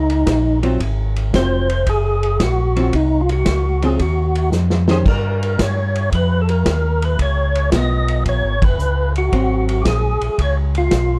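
A swung 4/4 groove at 113 BPM drives this greasy, bluesy soul jazz organ trio excerpt in Ab mixolydian, where a fat, key-clicking percussive tonewheel organ carries the melody and a round, mellow tonewheel organ holds the bass, both lightly overdriven through chorus vibrato and a slow rotary speaker, while a clean, hollow-body archtop guitar comps from 0.6 seconds, a vintage drum kit with dark cymbals and a punchy kick pumps in a small room, a drum fill lands at 4.5 seconds and a band accent hits at 8.5 seconds, all in a dark production with little reverb.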